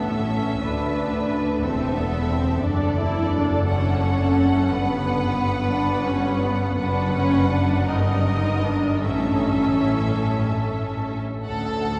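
All five string sections enter together at the start of this serene, tender slow romantic movement for string orchestra in D major, a rubato 6/8 at 49-61 BPM in dotted quarters: a clear, focused violin section sings the melody from a distance over an even second violin line, a rich, up-front viola accompaniment drops out at 11.2 s, a lush cello section sits in the background, and a double bass section with light vibrato and a smooth top anchors the bass, all inside a long cathedral reverb heard from further back in the room as the harmony passes through Eb/G and A before settling on D at 11.4 s.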